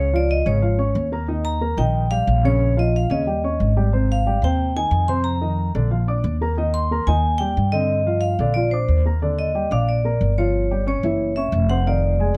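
A straight 4/4 groove underpins this sunny, sophisticated slice of Afro-Cuban jazz, cut from a longer piece. The plucked upright bass sits lowest and most prominent in the mix, its woody, growly steel-string tone anchoring the harmony throughout. Above it, a dark grand piano adds mellow accompaniment with a short sustain, ranging from low register chords up into the treble. The vibraphone carries the melody with medium hard mallets and its motor off, giving a ringing, metallic yet smooth voice. At 9.2 seconds the vibraphone moves into a solo over richer colours such as Ebmaj9 and Em69, after a passage built on chords like Dbadd9, Abmaj7 and F7sus4. Close, detailed microphones and very little reverb keep all three instruments up front and intimate.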